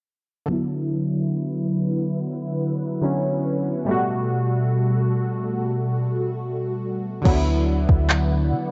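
Contemporary R&B with a romantic, dreamy mood, heard as a short cut from a longer piece. Round, detuned analog keys open at 0.5 seconds with chorus and phaser, sitting up front while a filter sweep moves through them over the opening stretch, voicing D69 and then Gmaj9. A hollow, flute-like pad joins at 1.2 seconds with slow-attack sustained chords, its dark, nasal tone thickened by ensemble chorus and breathing with sidechain pumping. At 7.3 seconds the harmony returns to D69 as a deep, boomy 808-style bass and an electronic drum kit arrive together, the kit's soft kick, handclaps and crash cymbal carrying an overdriven edge. The whole recording has a worn cassette character, with warbly pitch drift, light reverb and a dulled top end.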